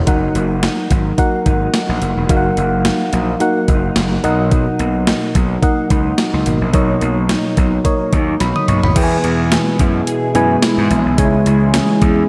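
Glossy and romantic, this 1980s-style pop excerpt rides a gently swung groove, with a dark FM electric piano carrying the chords while a mellow, clean guitar riff sits in the background, coloured by ensemble chorus and tape echo. Up front, a gritty, overdriven slap bass and a gated 80s digital drum machine with a thumpy kick and gated-reverb snare drive things along, and a drum fill at 8.4 seconds leads into a new section. At 9.2 seconds a swirling, detuned sawtooth pad drifts in behind the band with phaser and chorus, deepening the dreamy hall reverb that soaks the whole mix.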